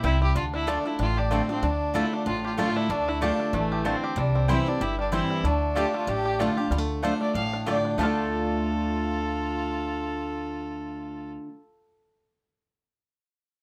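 A clear, nasal fiddle leads up front in this rustic, haunting bluegrass excerpt in D minor, sharing the melody with a twangy fingerpicked banjo at a brisk 189 BPM with a light swing on the eighths. A bright, full-bodied dreadnought guitar, with audible finger squeak, picks out the accompaniment while a mandolin adds double-string stabs and a dark, woody pizzicato upright bass anchors the Dm to C to Dm movement. At 5.8 seconds a distant second fiddle enters with a rich, even line and light vibrato, all set in a moderate studio ambience.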